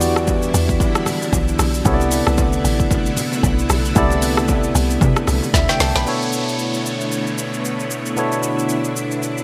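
Amapiano in B minor at 114 BPM with a swung sixteenth feel, this hypnotic, soulful excerpt opens on a drop where a punchy, woody log drum bass, a barky electric piano with analog chorus, shimmering vintage string-machine violins pumping under sidechain, a deep house kit with a deep kick, woody snare, dark hats, rim click and shaker, and very quiet hard-hand bongos and congas move through Em9 and Cmaj13, before a drum fill at 5.5 seconds hands off at 6.1 seconds to a Bm11 passage where the bass and hand drums have dropped away and a downlifter sweeps beneath the piano, strings and kit, all set in a lush hall reverb with a bright 1980s-style digital sheen.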